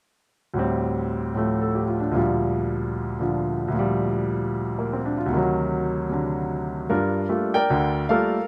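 A clear grand piano plays alone in this short cut from a longer solo jazz piece, sounding intimate, natural and up front, with its action noise audible beneath the notes. The mood is moody and late-night, set in G minor at 152 BPM in 4/4 with a swung eighth-note feel. The piano covers a range from D2 to G5 and sits in light reverb. The harmony moves from D7sus4 to Gm7/D, reaches D7b9 at 5.3 seconds, and then settles on Gm9 as a new section begins at 6.9 seconds. The piano plays from 0.5 to 8.5 seconds, so the passage is over almost as soon as it begins.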